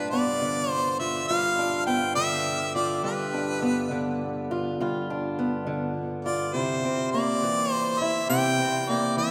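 A clear, close-miked harmonica carries the melody up front in a jazz-inflected solo, its soft attack, light vibrato and scooped notes giving this short excerpt of acoustic country blues a soulful, swaggering feel at 68 BPM in a straight 12/8. Alongside it, equally up front, a fingerpicked acoustic archtop guitar with old strings supplies woody, boxy accompaniment, moving from G7 to C7 at 6.5 seconds in G mixolydian. Both sit in a wet cathedral reverb with a long tail, recorded in a church or concert hall with a faint mains hum in the background.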